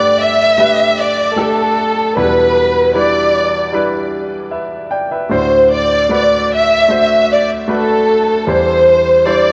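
A bowed violin section and a concert grand piano begin together, carrying a heartbroken, melancholic pop fragment in E minor at 76 BPM in a straight 4/4. Up front and lush, the strings sing the melody between A4 and E5 with expressive vibrato and a full ensemble body, sitting above the piano in level. Beneath them the piano supplies accompaniment from a deep D2 bass up to G5, its tone clear, present and polished yet short in sustain, colored by a cassette tape effect. The harmony moves through Gadd9, Em7, D7 and Cadd9/E before this section, cut from a longer piece, breaks off at 9.5 seconds. A drenched hall reverb with a 3.2-second decay surrounds the home cassette recording, giving the strings and piano an aching, spacious glow.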